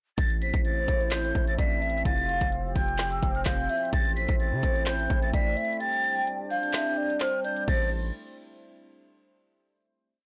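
A breathy, hollow jazz flute carries the melody high above this menacing trap piece, its vibrato and tongued notes repeating like a sampled loop through a digital delay. It sits over a half-time beat at 128 BPM in A minor, where an electronic trap kit knocks up front with a woody snare layered with handclaps, crisp sixteenth-note hi-hats with fast rolls, and crash cymbal. A punchy 808-style bass with a sine core and a noise layer holds long sub-bass notes that follow the kick and slide in pitch, while an evolving sawtooth-and-triangle pad with a filter swell sustains chords through chorus and phaser. A soft, warbling clarinet-like synth lead, detuned and dark with a sub octave, adds a sparse looping counter-melody through chorus and delay. The chords move from A minor through Fsus2 and Gsus4, and the kick drops out from 5.8 to 7.7 seconds before the piece settles on a final A minor chord. 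The dry, blown-out, overdriven recording gives the whole hook a hard-hitting, gritty edge.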